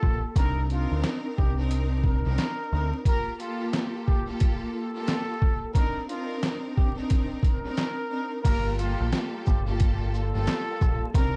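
Dark and gritty, this boom-bap hip-hop excerpt in G minor moves at 89 BPM with a swung 16th feel, built on a compressed, pitched-down sampler-style drum kit with a thumpy kick, handclaps, shaker and crash, sitting up front beside a round, punchy dub bass that plays until 2.9 seconds and returns at 8.4 seconds. A breathy, whispered trumpet with plunger mute carries the jazz-style melody through delay and plate reverb, over a lush, bowed string section given a cassette-tape tint, as the chords move between Cm9 and Gm9. At 8.4 seconds a fat, lightly overdriven tonewheel organ with key click and fast rotary speaker enters in the background, all wrapped in a dark production with vinyl crackle.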